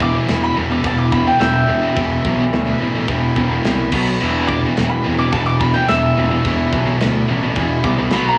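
Epic and heavy, this short heavy metal passage sets a woody, double-strung mandolin solo with a cassette-tape tint atop a growly, fuzz-driven picked bass up front, a scooped high-gain guitar riff in the background, a very quiet tight distorted guitar, a double-tracked distorted guitar higher up and a tight acoustic drum kit of china, crash, kick and snare, all captured in a small-room home cassette recording with little reverb as the chords move from Em to B5 at 3.9 seconds and back.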